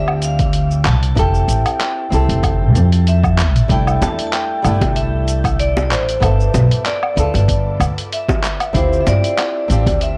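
The recording has a worn, warbling cassette character, its pitch drifting over a light small-room ambience. This warm, relaxed sunset chillout piece, cut from a longer track, moves at 95 BPM in 4/4 with a lightly swung sixteenth feel, cycling through Dm11, Fmaj9, C69 and G13. A ringing, metallic vibraphone played with hard mallets carries the melody, its motor vibrato washed in digital delay and shimmer reverb. A boxy, fingerpicked flamenco guitar with audible finger squeak accompanies under the same effects, while a woody, thumpy pizzicato upright bass sits dark and up front as the loudest part. A gritty, overdriven sampler-style kit of cabasa, handclaps, hi-hat and woodblock plays alongside a punchy, layered electronic kick, and round, low-tuned bongos struck with hard hands enter at 4.0 seconds.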